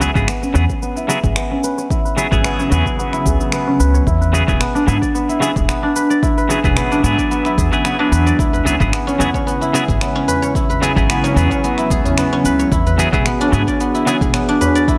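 Earthy and peaceful, this organic downtempo excerpt rests on a silvery, up-front guzheng playing arpeggios through a filter sweep and delay, over a twangy, compressed clean electric guitar with harmonic tremolo, pumping and delay, and a woody, thumpy pizzicato upright bass. A punchy, layered electronic kick enters at 0.2 seconds beside electronic cabasa and finger snaps in a lightly swung groove. A low-tuned, distant tabla joins at 8.5 seconds, followed at 9.0 seconds by a warbling, nostalgic lo-fi pad of detuned sustained chords with chorus and pumping, all set in a small, lightly reverberant room.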